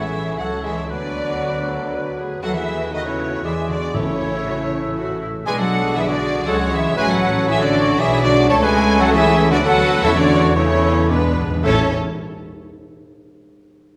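A spirited, lively excerpt of a quick classical-period movement in triple time opens with every part but the timpani at once: a rich, lush violin section carries the melody while airy flutes, a soft-attack oboe and a second, smooth-topped violin line sit behind it; a bright but very quiet viola section and a background bassoon supply the accompaniment; a mellow French horn section holds sustained chords alongside dark trumpet stabs; clear double basses and expressive cellos anchor the bass; and round, soft-mallet timpani enter at 3.9 seconds and return from 10.0 seconds with a fill at 11.1 seconds, the ensemble set in the wet reverb of a scoring stage.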